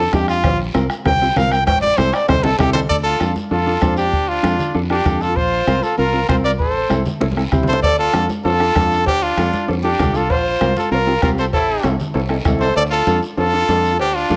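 A clear, up-front trumpet opens this danceable, passionate cumbia excerpt with a short solo over mellow, clean electric guitar with spring reverb and round fingered electric bass, joined by a soft-beater bombo, ringing congas, raspy guiro in the background, and compressed, saturated timbales and cowbell that drop out at 2.8 seconds, while a bright trumpet with vibrato enters at 2.7 seconds with a second line and the timbales and cowbell return at 7.8 seconds through the end of the excerpt in a moderately reverberant large studio.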